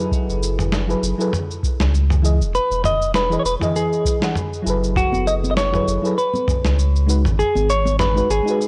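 Wistful and smooth, this sunset chillout excerpt moves at 99 BPM with a 16th-note swing in F# dorian, its mellow FM electric piano laying down dark, warbling chords through chorus and delay over F#m11, Emaj7 and G#m7 while an up-front round sine sub bass sits beneath. A gritty, compressed sampler-style drum kit of shaker, snare and toms pairs with a deep, overdriven electronic kick that stops at 6.8 s, and a clean, hollow-bodied semi-hollow electric guitar carries the melody with tape echo from 2.5 s, joined by congas in the background from 5.1 s. Light reverb and digital ambience frame the whole, with the worn, drifting pitch of old cassette tape giving it a faded haze.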